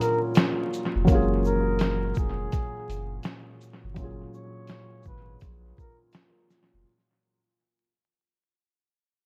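Dreamy and mellow, this short lo-fi hip hop excerpt drifts at a relaxed swung pace over a single F#maj9 chord, fading out across its full length as if cut from a longer piece. A felt-muted upright piano sits up front with a dark, intimate tone, its thick felt and audible action noise giving the accompaniment a vintage softness. Over it, a trumpet with a bucket mute carries the melody in a veiled, breathy, whispered voice with gentle vibrato and a jazz lilt, stopping at 6.0 seconds. A compressed, sampler-style drum kit anchors the groove with a thumpy kick, medium-tuned snare, hi-hat and shaker, sounding muffled as if re-recorded in a large room, while a grainy egg shaker ticks faintly in the background. A round, sine-like sub bass enters at 1.0 seconds with deep, sustained notes, and analog delay on the trumpet, piano, drums and shaker feeds an echo-heavy mix dusted with vinyl crackle and light reverb.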